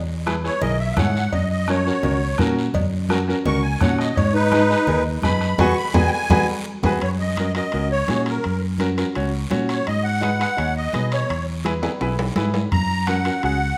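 Set in a moderate recital-hall reverb, this passionate, danceable cumbia excerpt at 169 BPM features a reedy, shimmering musette accordion up front, soloing through the first half over a dark, round, punchy fingered electric bass, a bright, woody upright piano, dry hard-handed congas in the background, a raspy guiro, ringing cowbell and timbales, and a soft-beatered vintage bombo that drops out at 6.9 seconds and returns briefly at 12.7, with a band accent and drum fill closing the first half around 7.0 seconds over chords moving through Eadd9, F# and G#m.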